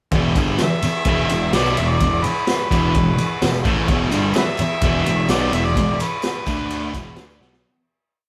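Raw and swaggering, this short garage rock piece has the band playing live in one room: a double-tracked, up-front fuzz guitar power-chord riff, doubled by a growly overdriven bass driving eighth notes in the background, over a stomping kit with a high-tuned snare, boomy kick and ride cymbal. An amplified, gritty harmonica carries a returning lick-based theme with punchy tongue slaps, while a very quiet, buzzy combo organ pulses triad chords in eighths with heavy vibrato and a jingly tambourine sits far back. The sound starts fading at 5.8 seconds, and a drum fill at 7.4 seconds closes the piece.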